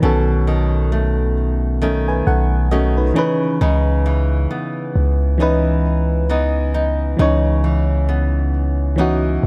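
A small room's light reverb surrounds this moody, late-night R&B fragment, cut from a longer piece and set in C# minor at 67 BPM in 4/4, with a 58% swing on the sixteenths and tuning at A4 = 442 Hz. All three parts play throughout its 9.5 seconds. Up front, a fingerpicked nylon-string guitar plays arpeggios with a deep classical tone, and finger squeak is audible. An FM electric piano supplies mellow accompaniment, its fast-attack, decaying notes carrying a noise layer. Beneath them, a long sustained 808-style bass holds the low end with a sine-pure, up-front weight. The harmony moves from B9 to C#m9 at 3.2 seconds.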